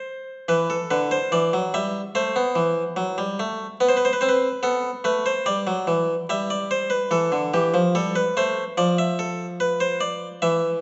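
Classical in a baroque style, this two-part invention for solo harpsichord feels both driving and contemplative, moving in a steady, straight four. The harpsichord plays throughout, from 0.0 to 10.8 seconds, an Italian-style instrument on a single set of strings whose plucked, bright tone sits up front and forward in the mids, spanning the range from D3 to E5. After an opening moment with its two voices unharmonised, the harmony turns through Em, F#m7b5, Amadd9 and back to Em before settling on Am and closing on Bm7b5/F. A lush recital hall reverb surrounds the instrument, while the overall production is dark and warm, with nothing above 7.9 kHz. The passage is cut from a longer piece.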